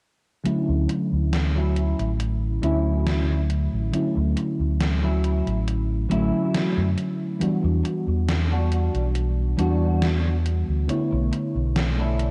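A woozy, nostalgic vaporwave fragment with the softened, hazy character of cassette tape and a light reverb around it, cut from a longer piece and moving at a slow, straight 4/4 pulse. A mellow FM electric piano opens the passage, round and full-bodied with a faint noise layer, its chorus and analog delay giving the chords a gentle wobble as it sits up front. Fingered electric bass joins just after, dark and amped with tube saturation, while a gated 80s digital drum machine supplies hi-hat and an overdriven snare drenched in gated reverb, sounding as if re-recorded in a small room. A clean, picked electric guitar enters at 0.7 seconds with a riff coloured by ensemble chorus, 12-bit sampler grit, a low-pass filter and analog delay, and a filter sweep runs across it for the whole stretch. The harmony drifts from Dmaj9 to Em9 at 7.4 seconds and settles on Bm11 at 10.9 seconds.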